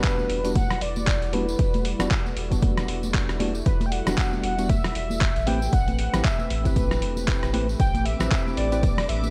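Deep and warm, this short deep house excerpt in E minor moves at 116 BPM with a 16th-note swing, drifting from Em9 to Am9 at 5.5 seconds over a punchy electronic kick, gritty compressed sampler-style claps, hi-hat and rim click, soft-handed congas, a jingly background tambourine and a barely audible electronic impact at the start. A round sine sub bass and a smooth sawtooth analog pad pump under sidechain, alongside hollow, wave-folded organ stabs that also pump, while a velvety, detuned sawtooth lead with chorus, tape echo and vibrato carries the melody. A very quiet, warbling lo-fi pad adds nostalgic haze from 0.7 seconds, and a shimmering vintage string machine with ensemble chorus appears at 7.8 seconds, all wrapped in a cassette-tinged digital ambience.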